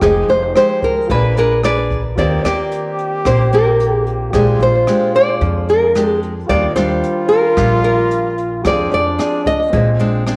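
A straight 4/4 bossa nova groove sets a romantic, breezy mood in this short piece cut from a longer work, with a brushed drum kit keeping time on hi-hat, rim click and a boomy kick, its dark tone and rolled-off top sitting back in the mix. Pizzicato upright bass adds a woody low end, while a fingerpicked classical nylon-string guitar comps through the changes, finger squeaks audible, over chords such as Fm9, Bb7b9, Eb6 and Ebmaj9. A second fingerpicked nylon-string guitar carries the melody, small but up front and given a slapback echo. A very quiet, intimate grand piano adds accompaniment in the background, its action noise audible. At 2.2 seconds a mellow, close-miked trombone enters with a jazz-style second line, its vibrato also treated with slapback echo, and moderate plate reverb with a small room ambience lends the whole ensemble a sense of space.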